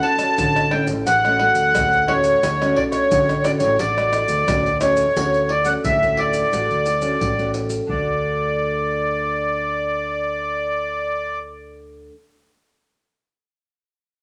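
A straight 4/4 samba-and-choro groove at 88 BPM in D major, playful and joyful, carries a reedy, sweet accordion melody with light tremolo tuning up front, over fingerpicked classical nylon-string guitar, a warm fingered electric bass entering at 0.4 seconds, and hard-handed pandeiro, maracas, tamborim and deep surdo that drop out at 8.1 seconds, set in a moderate large studio reverb in this short cut from a longer piece.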